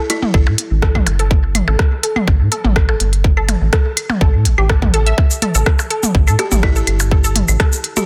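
A cool, clinical slice of minimal techno at 124 BPM in straight 4/4, cut from a longer piece and built on a single A5 chord. An up-front, tight electronic kick drives the groove beside a dark, rubbery square bass that sits forward in the mix with sidechain pumping, its hollow, wave-folded tone bouncing between G1 and A2. Over this, a juicy, squelchy blip pluck runs a riff from G4 to E5 through the whole excerpt, its detuned, resonant tone thickened by chorus, tape echo and sidechain pumping. A buzzing kalimba with a woody, thumbnail-plucked sound adds brief melodic fragments between E4 and G4, first near the start and again from 6.4 seconds, trailed by tape echo. A sparse click kit of cabasa, clicky hi-hat and rim click, with soft clipping on the snare, plays alongside electronic toms, claves and percussion blips treated with tape echo. Light reverb and digital ambience surround a dense, heavily limited modern master.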